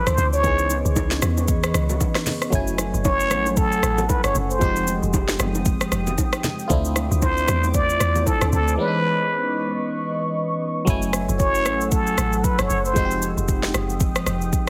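A plunger-muted trumpet leads this soulful, late-night amapiano cut, sitting up front with a breathy, growling, wah-wah tone, jazz-style vibrato and a trail of digital delay. Beneath it, a barking FM electric piano adds a biting, percussive accompaniment through a phaser, while a deep, moody ambient pad holds sustained chords with chorus, built-in reverb and sidechain pumping. A round, dark log drum carries the bass, and an electronic afro-pop kit with a deep kick, sharp snare, metallic hats, rim clicks and shaker drives the swung sixteenth-note groove. Bright acoustic congas and bongos sit in the background until 8.7 s, just before a short break, and the trumpet drops out at 13.3 s. The harmony cycles through minor-ninth chords such as C#m9, F#m9, Fm9 and Dm9, all framed by a heavily compressed, radio-like sound with light reverb.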